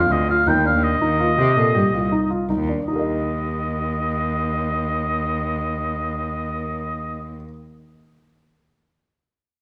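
A warm, vintage-toned oboe sings a classical-style solo melody with light vibrato up front over short-sustained grand piano arpeggios, joined at 0.1 seconds by a rich, expressive bowed cello bass with vibrato, portamento and a soft attack, in this shimmering, playful fragment of contemporary chamber music in 5/4 that slows down through its first 2.9 seconds before moving into a new section, heard in a moderate recital hall reverb.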